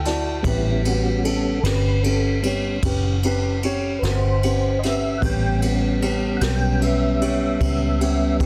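Rollicking and soulful, this slow blues in a straight 12/8 features a mellow, flute-like tonewheel organ soloing throughout, colored by slow rotary speaker, chorus vibrato and plate reverb, over an A9 chord. A dark, boxy baby grand piano opens with a short fill and then accompanies with plate reverb, while a round, foam-muted electric bass sits up front. A distant, roomy brush kit with dark cymbals and a boomy kick rounds out this excerpt, all held in a dense, heavily limited modern master.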